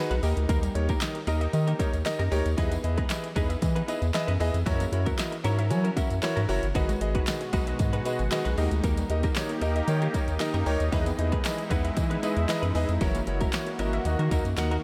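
Dance-pop with a bittersweet yet confident mood, built on a round, deep analog bass that sits up front and a house drum kit with punchy kick and snare, handclaps and hi-hat, joined by a close, jingly tambourine in the background and a light reverb. A clear concert grand piano carries the accompaniment with short fills at 5.2 and 10.1 seconds, while a hollow, bouncy square pluck spins delayed arpeggios and a direct-recorded clean electric guitar plays a compressed riff beneath, with sidechain pumping on the piano, pluck and bass. At 7.4 seconds a lush, thick detuned sawtooth pad enters with sustained chords, as the harmony moves from D# through Emaj7 and F#7 to G#m7 in this section cut from a longer piece.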